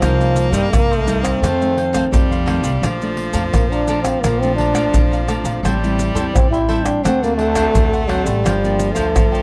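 A straight 4/4 samba-and-choro groove at 86 BPM, driven by a deep surdo, maracas, pandeiro and hard-hand tamborim up front, carries this playful, festive excerpt as a raspy, growling trombone leads the melody over an edgy, scooped tenor saxophone second line with tape echo, while crisp picked cavaquinho, bright fingerpicked nylon-string guitar and a woody, thumpy pizzicato upright bass move through Cm7, F7, Bbmaj7, Am7, D7 and Gm7 in a dry, close 1970s-style studio sound with light reverb.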